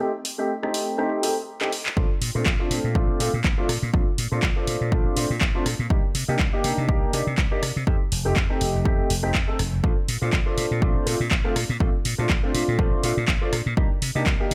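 This is a sunny, feel-good slice of filtered disco house with a gently swung 4/4 groove, cut from a longer piece. A clear, natural concert grand piano carries the accompaniment from the start, its deep bass and up-front placement colored by phaser, sidechain pumping and a low-pass filter. A tape-warm analog drum machine joins at 0.2 seconds with handclaps, hi-hat and rim click, its hats pumping against the sidechain, and a drum fill at 1.6 seconds closes the opening break. At 2.0 seconds a bright, amped slap bass and a punchy electronic kick drop in, the bass also pumping and filtered while the kick sits firmly up front. A filter sweep runs through the whole passage over chords moving through Bbmaj7, Cm9 and F9, all set in a light reverb.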